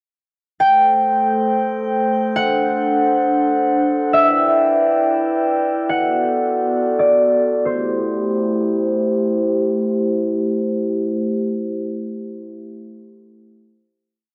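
Spacious and hazy, this atmospheric cloud-rap piece unfolds as a brief, complete hip hop sketch. A concert harp sits up front with a sparse, fingerpicked melody that repeats like a sampled loop, its ringing acoustic notes trailed by analog delay until it stops at 9.6 seconds. Alongside it, a glass harmonica holds ethereal, glassy chords with a slow attack and a beating shimmer, also up front, sustaining as a pad until 11.5 seconds. Through the breakdown the harmony moves through Am7, D7, Em7 and Bm7 before settling on a final Am7 chord at 7.7 seconds. Light reverb and a dry, gritty hardware recording with a low-pass filter give the whole a softened, dusky top end.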